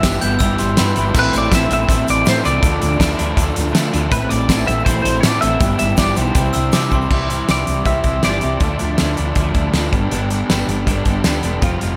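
A straight 4/4 beat at 161 BPM drives this upbeat, wistful indie rock piece in C major. A loose, up-front drum kit with punchy kick, fat snare, dark cymbals, hi-hat, crash and tambourine fills a pumping room, while a woody, growly fretless bass with subtle chorus sits underneath. A twangy, bright twelve-string electric guitar carries the melody with slapback echo over a crunchy overdriven riff and a second, background twelve-string riff in ensemble chorus; a very quiet, grainy tube shaker runs until 7.1 s, a sparkling glockenspiel with brass mallets rings in briefly at the start and again just before a drum fill at 6.9 s, and the melody guitar stops at 9.9 s.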